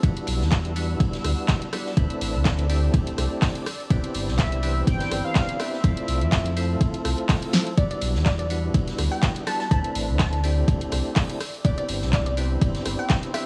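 Deep house at 124 BPM in E minor with a smooth, late-night mood and a light swing, built on an overdriven, up-front electronic kick, a punchy house kit with bright hats, claps and rim clicks, a faint airy street-band kit in the background, and a deep sine sub bass with octave that pumps under sidechain along with a gritty tonewheel organ's percussive stabs with chorus vibrato and tape echo. A moody, detuned ambient pad with 12-bit sampler grit sustains Em9, D9sus4, Cmaj9 and Fmaj7 chords behind them, while a velvety synth lead carries the melody from 4.4 to 7.3 seconds; after a drum fill at 7.5 seconds, a crystalline wavetable pluck takes over to the end of this cut from a longer piece.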